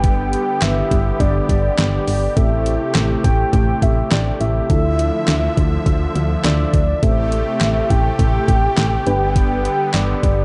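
Synth-pop with a driving, nocturnal mood, this short cut from a longer piece has every part playing together from 0.0 to 10.4 seconds over a G, Am7, Dmadd9, Am7, G progression. Up front, a detuned 8-bit digital drum machine with a thumpy kick, medium-tuned snare, hi-hat and handclaps sounds overdriven and sampler-style, as if re-recorded in a large room. Beneath it, a punchy FM bass gives a round, fast-attack foundation. A brassy, nasal analog pad built from detuned sawtooths holds sustained chords with chorus, vibrato and a filter sweep. Gentle electric-piano-like synth keys with a mellow triangle-and-sine tone add decaying accompaniment through chorus, phaser and dub echo, while a dark, full octave-layered lead with a sub octave carries the melody under chorus, vibrato and its own dub echo. The mix is echo-heavy with light reverb and a rolled-off top end.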